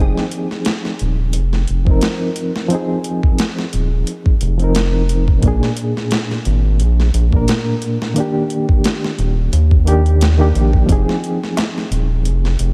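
A round, deep analog bass sits up front in this brooding, smoky trip hop passage at 88 BPM in F dorian, beneath a gritty, overdriven sampler-style drum kit with a thumpy kick and a reedy electric piano carrying fast tremolo and tape echo over Fm7, Bb7 and Ebmaj7, while a soft-handed darbuka sounds briefly in the background at 11.6 seconds, all set in light reverb.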